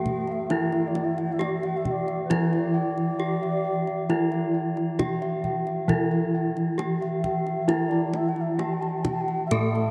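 A bright, ringing bronze metallophone leads this serene, shimmering Javanese gamelan excerpt at 67 BPM in 4/4, its horn-mallet melody up front with the beating shimmer of paired tuning. Beneath it sit a lower metallophone accompaniment and a bass line of bossed gongs, both with a boxy, warm small-room tone, while higher round-toned gongs play arpeggios in the background. A pure, mellow bansuri with vibrato and a soft attack carries a second line, and the tight, dry kendang, struck with hard hands, joins at 0.1 seconds, all within a vast, echoing cathedral space.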